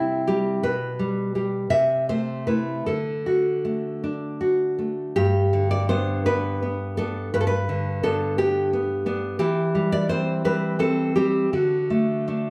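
A bright, full-bodied nylon-string guitar with fresh strings sits up front in this sunny, warm romantic fragment for solo classical guitar, fingerpicked in a rubato 6/8 with a touch of slapback echo and moving into a new section at 5.2 seconds before the cut at 12.5 seconds, set in moderate recital hall reverb with a dark production.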